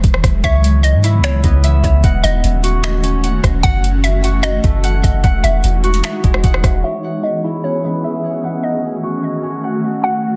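A half-time 4/4 groove at 150 BPM, built from finger snaps, metallic hi-hats, a soft kick and rim clicks on a tape-tinged R&B kit alongside a round, deep 808-style bass, anchors this melancholic, hazy cloud-rap fragment in C# minor until both drop away at about 6.8 s, leaving an ethereal pad with sidechain pumping, a hollow, bouncy square pluck melody with chorus and delay, and fingerpicked concert harp arpeggios ringing through delay to drift over C#m7, D#m7b5, F#m7 and Emaj9 chords in a dense, heavily limited master marked by lossy digital artefacts.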